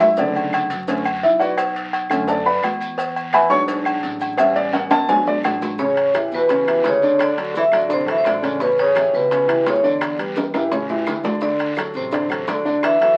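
Afro-Cuban jazz at a brisk 170 BPM in 4/4, this danceable, sunny clip from a longer piece sits in A mixolydian and moves through chords such as Bm7, E7, A7, D and Em7. A warm, intimate grand piano carries the opening as the featured part until 5.8 seconds, up front with audible action noise and a short sustain, over a plucked upright bass that sounds woody and bright with steel strings. Ringing metal-shell timbales and agogo bells sit close, dry and forward, while tight, high-tuned cowbell and bongos with hard hands, a raspy, saturated guiro, very quiet woody claves and grainy maracas fill out the percussion, with drum fills marking the turns. At 5.8 seconds a metallic vibraphone played with medium hard mallets and the motor off takes the melody up front, joined by a mellow baritone saxophone in the background whose light vibrato, scooped notes and smooth top shape a jazz-style second line. 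The whole track carries the crackle of a very old 78 rpm record and a moderate studio reverb.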